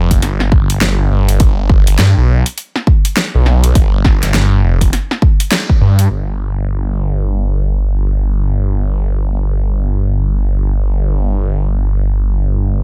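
A thick, swirling detuned saw bass with phaser and tube saturation opens this gritty, funky glitch hop excerpt at 102 BPM with a swung 16th feel, joined almost at once by a punchy, up-front electronic kick and a layered pop kit of fat snare and bright, low-pass-filtered hats that hit a band accent at 5.5 s before the drums drop out by 6.1 s, so the bass carries the second section alone to 12.8 s within a digital ambience.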